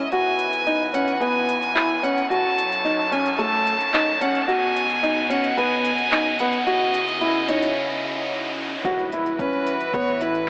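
Piano and strings electronica in E major at 110 BPM, hopeful and tender, built on a felt-muted upright piano riff that sits soft and intimate up front while a clear, vibrato-rich solo violin carries the melody over a bowed string quartet holding floating sul tasto chords with sidechain pumping, a deep house kit of smooth hats and handclaps, and a riser building in the background. After a break from 7.8 seconds, the drop lands at 8.9 seconds with an impact, a round sine sub bass and a deep electronic kick. The whole sound is bathed in a huge, wet ambient reverb and filtered through a lo-fi AM radio tone, in a passage cut from a longer piece.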